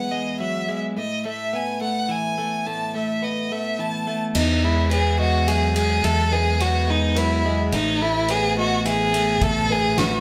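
A wet studio reverb surrounds a band playing live in one room in this soaring, cinematic post-rock passage, cut from a longer piece and moving at 106 BPM in 3/4 with a straight feel in E major. From the start, a clear, focused solo violin sings the bowed melody up front with vibrato, over bright, clean picked arpeggios from a compressed twelve-string electric guitar, while the harmony moves between Eadd9 and Asus2. At 4.3 seconds a distant, roomy acoustic drum kit enters with a fat snare, punchy kick, crash and ride cymbals and a rolled-off top. A felt-muted upright piano arrives at the same moment, adding soft, mellow, intimate arpeggios in the background. The fingered electric bass joins at 4.4 seconds with a dark, round, punchy tone, direct and amped, anchoring the low end as the opening section repeats with the full band.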